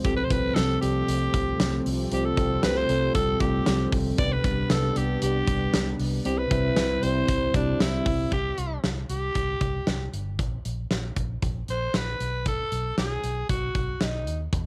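A raspy, gritty alto saxophone carries the melody up front throughout this romantic, glossy 1980s-style pop excerpt in C major, moving at 116 BPM in a straight 4/4. Beneath it, a mellow tine electric piano and a lush, detuned unison pad with a chorus shimmer and slow attack fill out the harmony over Fadd9/C, G/C and C until both drop away at 8.3 seconds. From there the sax rides over a sparer passage that moves through C5 and a chordless stretch before landing on B7(no3). A big rock drum kit, with a fat snare, punchy kick, hi-hat and tambourine and a cassette tape tint, drives the whole clip alongside a dark, round, foam-muted fingered electric bass. The sound sits in a moderate booth ambience with the character of a home cassette recording.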